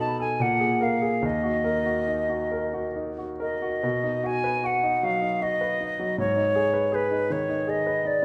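Melancholic and elegiac, this short classical passage from a longer romantic piece for flute and grand piano moves in a rubato 3/4 at roughly 67-81 BPM. The silver concert flute carries the melody with an airy, straight tone and crisp attack, while the clear concert grand piano supports it with smooth accompaniment over a deep bass. Both parts sound throughout a wet recital hall reverb, and the harmony moves through Ebm and B before reaching Abm at 6.2 seconds.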